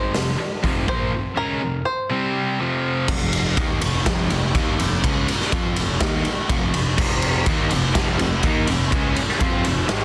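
Aggressive and driving, this hard rock excerpt opens with a twangy, fingerpicked bluegrass banjo melody carrying an analog delay until 2.6 seconds, over a crunchy overdriven guitar riff in the background, a bright high-gain guitar riff that drops out at 3.1 seconds and returns at 7.0, a fuzz-drenched picked electric bass, and an up-front raw garage drum kit with a punchy kick and gritty, saturated hits in a pumping stone room, set within a dense, heavily limited master with little reverb.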